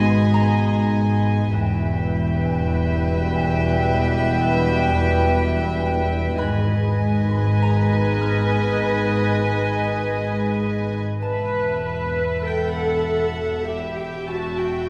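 Uneasy and mysterious, this suspense film-score cue at 99 BPM sets a pure, floating violin melody over a rich second violin line and intimate violas, while mellow trombones and smooth French horns hold sustained chords until 10.9 seconds and a marimba with medium mallets plays a riff until 11.1 seconds, as dark double basses and soft cellos anchor the bass and a woody, distant violin texture and ringing harp return at 6.4 seconds, the whole excerpt heard from further back in a reverberant concert hall.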